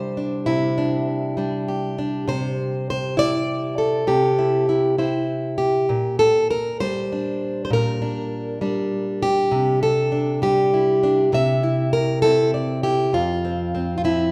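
Folk fingerstyle piece in 6/8 at 66 BPM, where a solo fingerpicked plugged-in steel-string acoustic guitar, dark and up front with audible finger squeaks, moves peacefully through Cadd9, Gm/Bb and back before settling on F5 at 13.1 seconds, all blooming into the lush reverb of a recital hall in this brief excerpt cut from a longer piece.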